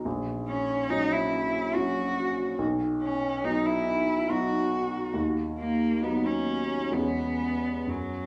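A recital-hall reverb surrounds this brief romantic duo, cut from a longer piece, with both players sitting up front in a small room ambience. A warm grand piano with long sustain opens the accompaniment in a gently rubato triple metre, and half a second later a single rich cello enters with the melody, bowed with a soft attack, vibrato and expressive portamento. The mood is serene and tender as the harmony moves from F#/A# through B and B/D# to C#m7/E at 6.9 seconds.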